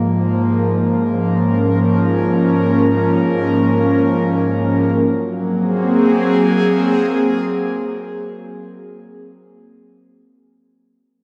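Warm and peaceful, this brief ambient excerpt rests on a single airy, breathy synth pad that holds sustained chords from the start until 9.0 seconds. The pad is soft and full-bodied, blending detuned sawtooth and triangle tones with a noise layer and a touch of ring modulation. Its slow attack and long release let each chord fade in gradually and hang in the air. Chorus gives the up-front pad a gentle shimmer, and a wet plate reverb surrounds it. A filter sweep colours the pad over a Bbm/Ab chord during the opening five seconds, and at 5.0 seconds the harmony settles onto Ab9 for the second section, leaving a calm, floating wash of sound.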